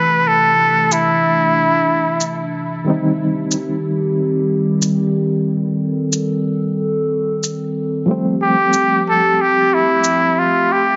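Melancholic and dark, this swung trip hop excerpt sets a nasal, straight-muted trumpet playing a jazz-style solo with vibrato and scooped notes, heard at the start and again from 8.4 seconds, over a barky, reedy electric piano with fast tremolo and tape echo, a warbling, nostalgic pad under chorus and a filter sweep, and close, dry maracas entering at 0.9 seconds, all set in a moderate spring reverb with a dulled top end.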